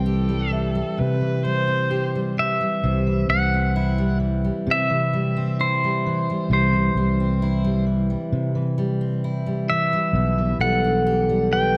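A clean, compressed pedal steel guitar played with fingerpicks carries the melody up front in this reflective, intimate acoustic folk-pop ballad, its slide lines shaped by volume swells. A full-bodied, fingerpicked dreadnought acoustic guitar and a dark, round fingered electric bass hold the ground throughout, while a focused, boxy bowed viola adds a brief vibrato second line until 2.1 s and a ringing vibraphone, motor off, plays smooth arpeggios early on and again from 10.6 s. A concert hall reverb surrounds the players as the harmony shifts from C to Em7/B near the close of this excerpt.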